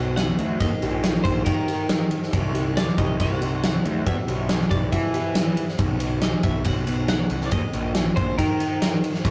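Bittersweet and cathartic, this short cut from a longer quiet-loud alternative rock piece moves at 139 BPM in a straight 4/4, with a clean, compressed twelve-string electric guitar carrying the melody over a boxy parlour-style acoustic guitar picking arpeggios in the background until 5.8 seconds. Up front, a growly, overdriven fuzz bass drives the low end while a big acoustic drum kit, entering at 0.2 seconds, pushes a fat snare, tight kick and ride cymbal with a rolled-off top. The chords shift from B through Eb, Cm and Em before landing on power chords, all captured as a rough rehearsal-room recording with light reverb.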